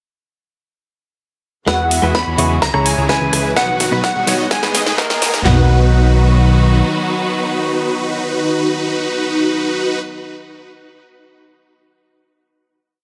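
A fat, sawtooth analog bass sits up front in this triumphant, anthemic festival progressive house piece in B major at 127 BPM, pumping beneath full-bodied detuned supersaw chords that take a filter sweep and phaser through the build from 1.7 s to 5.5 s, while a glassy wavetable pluck carries the hook phrases over a bright, twangy clean electric guitar playing dotted-rhythm chords, a smooth symphonic string pad, layered big-room drums with a punchy four-on-the-floor kick, huge snare, claps and metallic hats driving a drum fill, and a very quiet riser, before the strings and synths sustain a final B chord from 5.5 s.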